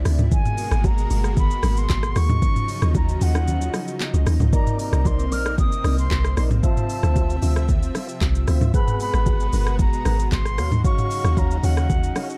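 Hypnotic and deep, this amapiano excerpt moves at 114 BPM in a dark, dry mix, where a round, percussive log drum bass and an electronic afro-pop kit with a deep kick, crisp hats, handclaps, rim clicks, shaker and toms sit up front (the kick drops out from 3.5 to 4.5 seconds), very quiet ringing bongos and congas add soft-handed color, a lush detuned sawtooth pad with chorus holds chords from Abm9 through Ebm9, Cm9 and Dm9, an airy, distant silver flute with vibrato and delay carries the melody, and a mellow, lightly overdriven tonewheel organ with fast rotary speaker and delay adds stabs from 4.5 seconds.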